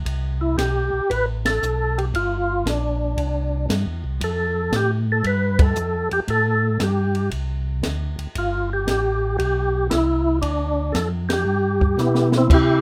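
Soul jazz organ trio at 116 BPM in G mixolydian, soulful and bluesy with a swung 4/4 feel, where a mellow, round tonewheel organ plays the bass line through a slow rotary speaker, a compact cocktail drum kit with a punchy kick, high-tuned snare and dark cymbals sits dry and up front, and a fat, lightly overdriven percussive tonewheel organ carries the melody with key click and chorus vibrato, the band hitting accents at 1.4, 5.5 and 11.2 seconds before a drum fill at 12.0 seconds closes this cut from a longer piece in light reverb.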